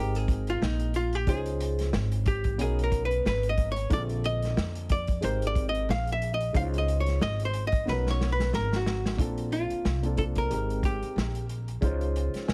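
A heavily compressed, radio-like sound with little reverb frames this cool, swung jazz-hop excerpt, where a dark, clean hollow-body archtop guitar plays a picked solo up front over a mellow upright piano with audible action noise, a woody pizzicato upright bass and a tight vintage drum kit whose fill from 7.9 to 9.2 seconds leads into the next section.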